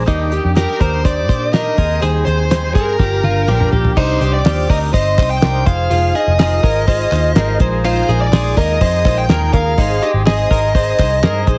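A buzzy combo organ with heavy vibrato, a shimmering, boxy twelve-string acoustic guitar with finger squeak, clean twelve-string electric arpeggios with slapback echo and a round, foam-muted bass open this bittersweet, wistful slice of jangly indie pop in C minor at 124 BPM, joined almost at once by a cloth-damped, thuddy drum kit with dark cymbals and a fat snare. A dark, distorted bluesy lead guitar carries the melody up front from 0.6 seconds, and after a drum fill the chords move from Ebmaj7 and Gm7 to Cmadd9 at 4.0 seconds, where crisp group handclaps come in at 4.5 seconds in the background. The mix has a light studio reverb and a heavily compressed, radio-like sound.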